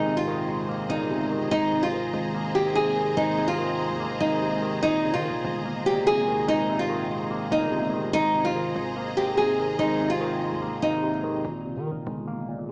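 Heard through a small-speaker tone and set in a moderate scoring-stage reverb, this wistful, dreamy hip hop fragment is cut from a longer piece and moves with a half-time feel in 4/4. Up front, a bright, fingerpicked nylon-string guitar carries the classical-flavoured melody through tape echo. Beside it, an overdriven tine electric piano pushed through a combo amp adds barky, gritty accompaniment coloured by a phaser. Behind them, a lush symphonic string section holds sustained, bowed chords with a focused, smooth top and vibrato. Underneath, a distorted 808-style bass sits in the background, heavy and aggressive, with a fast attack, a noise layer over its sine body, and a decaying tail. The guitar and strings stop at 11.4 seconds, leaving the electric piano and bass to carry a brief closing section until 12.7 seconds.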